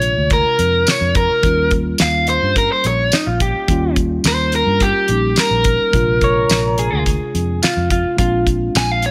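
A straight-eighth soul blues groove at 107 BPM in 4/4 rolls along on a dry, airy 70s drum kit with a fat snare, tight kick, hi-hat and tambourine, anchored by a round, foam-muted fingered bass in a soulful, rollicking mood. Up front, a raw overdriven garage guitar carries the melody over a mellow tine electric piano colored by phaser, as the chords move between Bb9 and Eb9. From 3.1 to 8.5 seconds a dark, slightly broken-up slide guitar played with fingerpicks adds a compressed second line, all in a small room with light reverb, in a passage cut from a longer piece.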